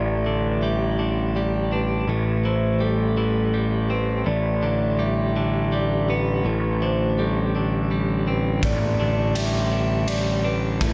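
Melancholic and brooding, this post-rock passage at 82 BPM in 3/4 sets bright, compressed twelve-string electric guitar arpeggios and ringing, motor-off vibraphone arpeggios, both with digital delay, over a punchy, overdriven fuzz bass holding A1, as chords drift from Dsus4/A through Am7, G/A and Csus2/A in light reverb until a big rock drum kit with punchy kick and ride cymbal enters at 8.6 seconds.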